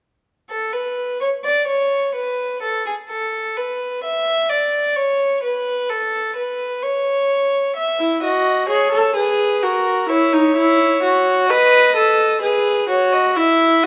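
A moderate recital-hall reverb, about 1.5 seconds long, surrounds this stately, elegant baroque-style fugue, cut from a longer piece and set in 4/4 at 64 BPM with a straight feel. A single violin opens at 0.5 seconds on the second line, its gut-string, period-style sound dark and nasal, bowed up front yet with a distant cast. At 8.0 seconds a solo viola joins as accompaniment, its bowed tone rich and reedy with light vibrato, sitting lower than the violin and somewhat louder in the balance. The harmony moves from unaccompanied lines into E, then F#7 and B7, before closing again on bare lines. Both instruments play through to the end at 13.9 seconds, giving the passage a poised, courtly character.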